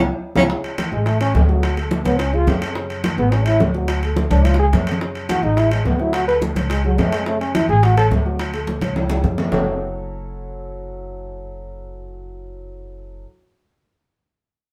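This sultry, sophisticated Afro-Cuban jazz fragment, cut from a longer piece, opens at 0.0 seconds with a band accent and a percussion fill over a dark, mellow upright piano with long sustain and a woody pizzicato upright bass on steel strings, placed up front. At a brisk 213 BPM in straight 4/4 and F# minor, tuned to A4 = 435 Hz, the harmony cycles through F#m7, Amaj7, D and C#5. From 0.5 seconds a clear, punchy trombone takes a forceful jazz solo with vibrato, sitting up front in the mix. Round, low-tuned bongos, ringing congas played with hard hands in the background, and distant metal-shell timbales heard in a large room drive the groove with recurring fills until 9.6 seconds, when the percussion stops and a brief closing section follows. The band plays live in one room, with a wet studio ambience giving the ensemble a sense of natural space.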